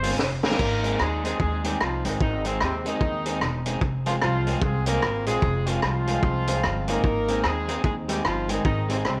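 A mellow, tight horn section carries the melody from 0.4 seconds, its smooth top and octave doubling sitting up front in this cheerful, joyful ska piece in Ab major at 149 BPM with a swung 4/4 feel. Underneath, a crunchy breakbeat drum kit plays throughout, its gritty, saturated sound, high-tuned snare and tight kick mixing crash cymbal, hi-hat and rim click, and a short drum fill opens the way between 0.2 and 0.6 seconds. A woody pizzicato upright bass with steel strings stays up front in the low register. An electric guitar at the edge of break-up adds twangy, fingered accompaniment through spring reverb, sitting lower in the mix. The harmony moves between Fm and Ab under a light reverb, in this brief cut from a longer piece.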